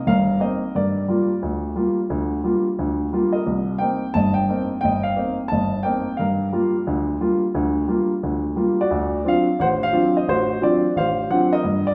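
A wet, large studio reverb puts the listener further back in the room, around a natural-sounding baby grand piano with a warm tone, spanning G1 to A5 over about 12 seconds cut from a longer piece. This is smoky, swinging solo jazz piano in G minor at a brisk 176 BPM with swung eighths, moving through Cm7 and Gm7 before landing on a D7#9 at 8.9 seconds.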